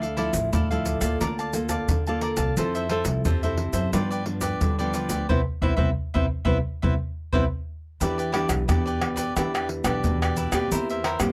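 A straight 4/4 pulse at 88 BPM drives this festive, lively excerpt of samba and choro in C major, cut from a longer piece. Up front, the percussion of egg shaker, pandeiro, tamborim and a tight surdo sounds compressed and saturated. A classical nylon-string guitar, also up front, is fingerpicked on fresh strings with audible finger squeak, while a crisp, bright, picked cavaquinho rides above it. Underneath, a pizzicato upright bass strung with steel sounds woody and growly. The harmony moves from Dmadd9 through Bbmaj7/D, Fmaj7 and G7 to a Cmaj7 where the band accents from 5.3 to 8.0 seconds, then a new section opens on Em7 and turns to C7/E. The dry, close 1970s-style studio sound carries only light reverb.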